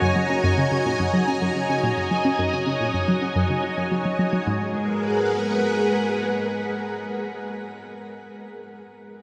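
Cosmic and mysterious, this fragment of sequencer-driven space music places a lush, vintage string machine up front with sustained chords through 7.5 s, while a round analog pluck with a filter sweep plays a decaying riff under chorus and delay until 4.7 s, and a bright, detuned pulsing gated texture glimmers with shimmer reverb in the background until 4.5 s, inside a huge, wet ambient space.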